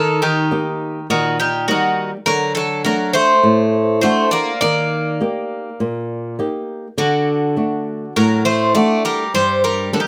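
Greek folk for a bouzouki band in D phrygian dominant at 102 BPM, bittersweet and brooding, cut from a longer piece, with a picked bouzouki melody ringing metallic through its octave-doubled strings, a brighter second bouzouki line below it, and a boxy, fingerpicked flamenco guitar accompaniment with audible finger squeak, all up front and closely miked in a moderate studio room as the chords sway between Eb and D before settling on Gm at 9.3 seconds.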